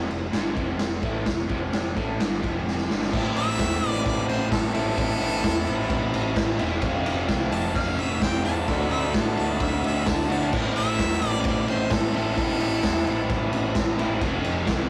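A straight 4/4 pulse at 130 BPM drives this raw, gritty garage rock excerpt in A minor, where an up-front, saturated acoustic drum kit with a punchy kick, medium-tuned snare, ride and crash and a dark, rolled-off top pounds alongside a crunchy, double-tracked overdriven guitar riff and a growling, picked electric bass with its own overdrive, until a drum fill at 2.7 s opens the way for a bright, present harmonica solo with light vibrato and overdrive that enters at 3.4 s over a shifting Am, F and D progression, all caught in a rough rehearsal-room sound with light reverb.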